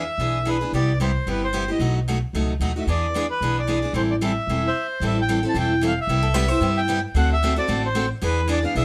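Acoustic string swing in the jazz manouche style, this fiery, bittersweet excerpt from a longer piece drives along at 224 BPM in 4/4 with a swung eighth-note feel, centred on A minor. A reedy, dark accordion carries the melody up front, its smooth tone lifted by a slapback echo. A bright, boxy parlour-style picked steel-string acoustic guitar supplies the accompaniment, while a woody, thumpy upright bass with gut strings sits forward in the mix, plucked with a dark weight. A stop lands at 4.7 seconds, just before the second section begins at 5.0 seconds. There, a second picked steel-string guitar with fresh strings and audible finger squeak slips in a brief concert-toned line from 6.2 to 6.7 seconds, all set in a moderate studio reverb over changes that move through E7, Cmaj7, B7, Am7 and D7.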